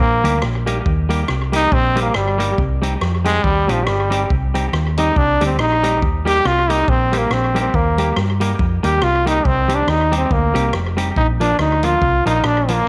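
A swung ska beat at 140 BPM in 4/4 sets a joyful, cheerful mood in Eb major, with a vintage drum kit of punchy kick, hi-hat and rim click joining at 0.2 seconds alongside a clean, compressed semi-hollow electric guitar, both carrying a slapback echo. Up front, a round, dark hollow-body short-scale bass holds the low end while a brilliant, forceful trombone takes the solo melody with vibrato from the opening moment, moving through Eb, Cm and Bb. A light small-room reverb gives this cheerful fragment from a longer piece a natural studio feel.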